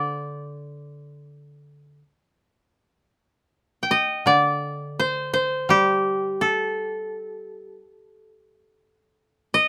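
The rhythm moves freely in a rubato pulse over a loose 4/4, giving this brief cut from a longer piece of Japanese traditional chamber music an austere, calm character. Two kotos, both played with fingerpicks, carry the whole texture. One sits up front with a woody, dry melody in the upper-middle register. The other supports it from a lower range with a quieter, warm accompaniment. The music shifts into a new section at 2.8 seconds, and after the accompaniment stops at 7.8 seconds the melody koto plays alone until 9.7 seconds. Close, detailed microphones and very little reverb keep the plucked strings intimate and clear.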